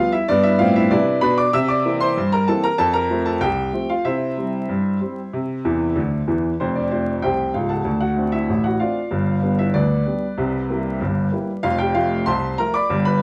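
Ragtime piano in F major at 95 BPM in a straight 2/4, cheerful and playful, with a solo baby grand that sounds open and up front, its long sustain ringing in a small room under a dark production and vinyl crackle, and a piano fill at 5.6 s leading into a second section at 6.6 s in this short cut from a longer piece.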